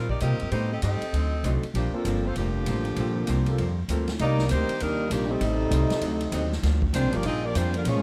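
A woody, pizzicato upright bass sits up front in this sultry, swinging big-band jazz passage, which is cut from a longer piece and moves at 196 BPM in 4/4 with a moderate swing on the eighth notes. Above it, a tight saxophone section carries the melody with a clear, present tone, light vibrato and a soft attack, while a trombone section joins at 2.4 seconds on a warm second line with the same gentle vibrato. The harmony starts in G minor, passing through chords such as Am7b5, D7b9 and Gm11, then shifts toward C minor at 4.2 seconds with a Cm9 before settling back on Gm7. In the background, a clean, picked hollow-body archtop guitar and a natural-sounding concert grand piano with deep bass and long sustain fill out the accompaniment. The drum kit, playing hi-hat, ride, snare and a boomy kick, sounds distant and roomy with a rolled-off top, and the overall mix carries little reverb.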